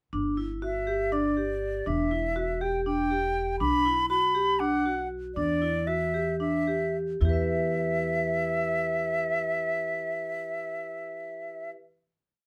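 Set in an uneven 7/8 with a straight feel at 219-243 BPM in eighths, this brief, complete chamber piece in E minor (tuned to A4 = 441 Hz) is restless and pensive, and it slows between 3.6 and 7.2 seconds before settling on a held final Em chord. A dark, ringing vibraphone, struck with medium hard mallets and its motor off, sits up front with a smooth arpeggiated ostinato, while a woody, growly pizzicato upright bass sustains low notes beneath it through G5, Em7 and Bm harmonies. Entering at 0.6 seconds, an airy silver concert flute, also up front, shapes an arching motif with vibrato, soft attacks and an unsteady tone, all wrapped in light reverb.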